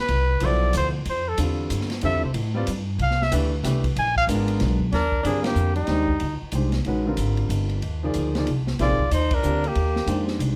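Modal jazz in a swinging 3/4, searching and hypnotic, with a forceful, scooped trumpet soloing up front over woody pizzicato upright bass, a natural grand piano and an open drum kit with dark cymbals and a punchy kick, before a whispered, breathy tenor saxophone joins as a second line at 4.9 seconds and the band hits accents at 5.4 and 9.3 seconds in this short cut from a longer piece.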